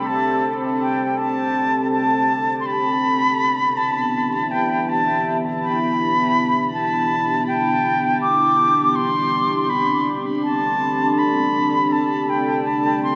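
A pure, expressive concert flute carries the melody up front, its soft-attacked, vibrato-laced phrases trailing into dub echo across this deep, meditative ambient fragment. Beneath it, a moody, full-bodied pad of detuned sawtooth and sine layers with a sub octave holds slow-blooming chords through chorus and its own reverb, moving from D7sus4 to Em7 and back at 9.0 seconds. A lightly swung feel, a wet echo chamber and a bed of vinyl crackle frame the passage in a spacious haze.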